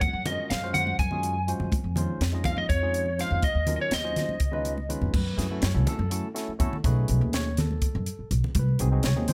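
This dry, close-sounding clip, cut from a longer electric jazz fusion piece, has a slick and intense character in an odd 7/8 metre with a straight feel. Up front, a slightly broken-up, picked lead guitar carries the melody with tape echo, while a mellow silver concert flute, distant and airy with a chiffy attack, adds a second line in the background; both play only until 4.9 seconds. Beneath them, a barky tine electric piano, lightly overdriven through a combo amp with a subtle chorus, comps through chords such as Gbmaj9, Dbmaj9/F and Ebm7. A woody pizzicato upright bass sits prominently in the mix, alongside a polished drum kit with a high-tuned snare and punchy kick, plus damped, hard-handed congas further back. A drum fill from 4.7 seconds leads into a new passage at 5.1 seconds, where the harmony shifts to F#m7, B13 and G#7/B# for the rest of the clip.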